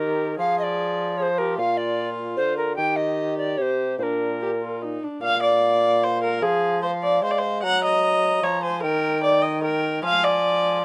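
Stately and courtly, this short excerpt from a longer Renaissance-style consort dance moves at 150 BPM in a straight 3/4 in Bb mixolydian, its opening phrase heard twice over chords that pass through Fm, Bb, Eb and Gb. A bright, airy alto recorder carries the melody with vibrato and a wooden chiff on its tongued notes, while a single bowed viola sits up front on the second line with a nasal, reedy gut-string tone in period style. Beneath them a mellow solo bassoon supplies the bass with light vibrato, sounding distant and roomy, all captured by close, detailed microphones in light reverb.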